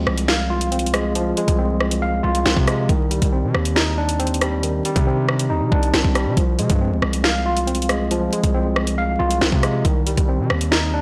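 A half-time drill groove at 138 BPM in 4/4 drives this dark, ominous hip hop excerpt, cut from a longer piece. The electronic drill kit sits up front with a knocking kick, a sharp, soft-clipped snare, metallic hi-hats, rim clicks and finger snaps, all carrying a tape-warm character from 0.1 to 10.8 seconds. Underneath, a punchy, heavy 808-style bass with a sine body, a noise layer and saturated grit hits with a fast attack and decaying tail, moving between C2 and C3. A worn, slightly out-of-tune tine electric piano, lightly overdriven and filtered as if heard through built-in speakers, sits up front across the whole 11 seconds, outlining a brooding progression from Fm/C to Cmadd9, back to Fm/C and landing on Cm. The whole mix has a blown-out, overdriven sheen with vinyl crackle and light reverb, giving it a gritty, murky atmosphere.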